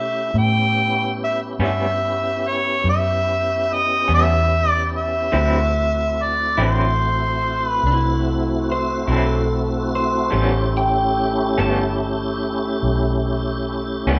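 Slow blues in 12/8 at 48 BPM in A mixolydian, soulful and rollicking as it moves from A9 to D9 and back, with a mellow, vintage harmonica run through overdrive carrying the jazz-style melody up front, with light vibrato and scooped notes, until 8.2 seconds, over full, lightly driven tonewheel organ chords turning through chorus vibrato and a slow rotary speaker, a dark, round, foam-muted fingered electric bass up front, a slightly broken-up, compressed electric guitar accompanying with tremolo from 1.6 seconds, and a second lo-fi guitar line bathed in spring reverb entering at 7.9 seconds, the band captured live in one room with a moderate large-studio reverb.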